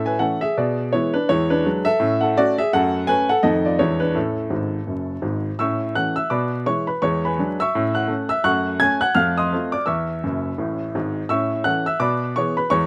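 A clear grand piano opens this playful stride jazz cut at once, playing solo at a brisk 168 BPM in 4/4 with a light swing on the eighth notes. Set in A major, the piano ranges from deep bass notes up into the sparkling top of the keyboard, moving through a cycle of chords that comes around twice, drifting from A through E7 and F#m to a chromatic F7 before settling home. Short piano fills at 4.5 seconds and again at 10.2 seconds round off each pass of the progression. The instrument sits up front with an intimate, natural character, close enough that its action noise is audible beneath the notes. The sound is dry, captured in the open air with little reverb, and a vinyl crackle runs through the recording, lending this 12.9-second fragment of a longer piece an old-time, swinging charm.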